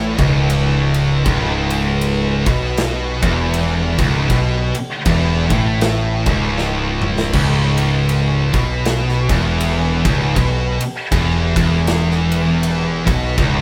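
A bright, double-tracked high-gain guitar drives this brooding stoner and doom metal excerpt, grinding out a low riff over a single minor chord with a lazy swing. Two thick fuzz guitars sit in the background, also playing a riff with a distorted, warm fuzz, while an overdriven picked bass adds a dark, round low end. A big acoustic rock kit with a punchy kick, medium-tuned snare and glinting cymbals joins at 0.2 seconds and plays a fill from 6.6 to 7.3 seconds, all caught as a band playing live in one room with light reverb.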